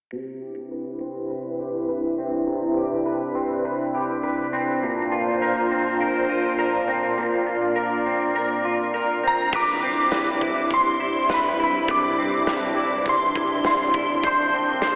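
Floating and dreamy, this dream pop excerpt drifts at 102 BPM in a straight 4/4, centred on C major and moving between Cmaj7 and Bbadd9. A clean, picked electric guitar with a twangy edge opens at 0.1 seconds with arpeggios, treated with analog chorus, tape echo and a low-pass filter, while a swirling sawtooth analog pad with a detuned, airy noise layer rises in behind it with slow attack and long release, colored by phaser and chorus. Both sit up front as a filter sweep runs through the opening passage until 9.5 seconds. At 9.3 seconds a shimmering, warbling FM bell with a vintage halo carries the melody high above, spread by ensemble chorus and tape echo. From 9.5 seconds a huge arena drum kit with a punchy kick, medium-tuned snare and bright cymbals joins in the background alongside a deep, round sine sub bass. The whole mix is soaked in a lush hall reverb and filtered through a telephone-like tone, leaving the piece hazy and suspended.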